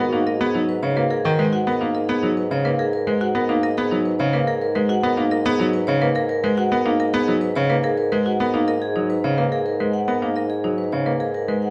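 A clear, up-front grand piano, a ringing, airy vibraphone melody, woody hard-mallet marimba arpeggios and a mellow bassoon on G#2 open this meditative, hypnotic minimalist classical fragment at 107 BPM in 3/4, resting on a single G#m9 chord in G# minor, while a warm French horn sounds briefly in the background from 0.1 to 1.4 seconds, all set in a moderate large studio reverb.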